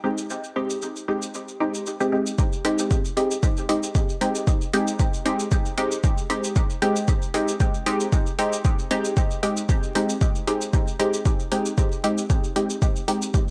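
A dry, gritty hardware recording with transformer saturation, vinyl crackle and light digital ambience carries this meditative, cavernous dub techno excerpt at 115 BPM in 4/4 with a gentle 16th-note swing. A muted, deep sawtooth chord stab on Abmaj7 plucks up front through chorus, phaser, sidechain pumping and dub echo, over a layered, small-room electronic shaker and hi-hat, and a punchy, tape-warm analog kick drum joins them up front at 2.4 seconds.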